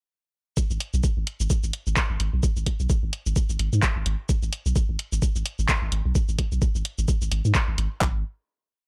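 A swung four-on-the-floor pulse drives this short, clinical and sparse minimal techno piece, as a tape-tinged garage kit with a knocking kick and clap runs from 0.6 seconds alongside a second techno kit of programmed closed hats, shaker and backbeat claps re-recorded in a large room. A deep, punchy sine sub bass with a pitch-drop attack rolls through a staccato groove, sidechain pumping against the beat and sitting up front. The drop holds until 8.0 seconds before a final note closes the dry mix.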